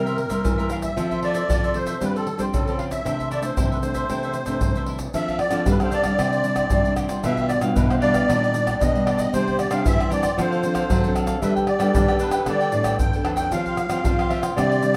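A reedy musette accordion carries the melody up front, its wet tuning giving a shimmering yet dark, smooth voice to this festive, playful samba and choro passage cut from a longer piece. Beneath it, a bright cavaquinho picks crisp chords while a full-bodied, fingerpicked nylon-string guitar adds classical-style accompaniment. A second nylon-string guitar, thumb-plucked and warm, supplies the bass line. Egg shaker, pandeiro, tamborim and a deep surdo sit close in a live-room sound from about 0.1 seconds, driving a straight four-beat feel. At 5.1 seconds a mellow trombone joins in the background with a jazz-style second line, its light vibrato sounding distant and roomy, as the harmony moves through colourful chords such as Ebmaj7/Bb, all within a moderate studio ambience.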